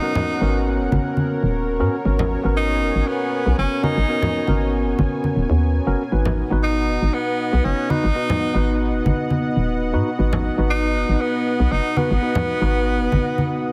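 Deep and late-night, this 118 BPM deep house excerpt with a gentle 16th-note swing sets a breathy, whispered tenor saxophone melody with vibrato and digital delay up front over a dark, detuned analog pad with chorus and a mellow tine electric piano playing delayed stabs, while low-tuned, close congas and a hollow, bouncy FM bass enter within the first 0.4 seconds, a very quiet downlifter ends by 2.1 seconds, and the harmony moves from G#m11 to B at 6.1 seconds in a small room with a heavily compressed, radio-like sound.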